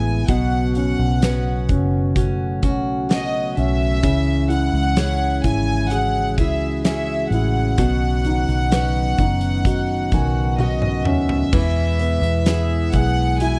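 A rich, floating violin section with slapback echo sings the melody over a warm grand piano, a flute-like tonewheel organ on slow rotary speaker, bright picked acoustic guitar arpeggios in the background and a dark, foam-muted electric bass up front, with a big-room drum kit with fat snare and punchy kick joining at 0.3 seconds in this hopeful, emotional pop ballad fragment, whose dry, close 1970s-style studio sound frames a piano fill at 9.7 seconds and a drum fill at 10.6 seconds.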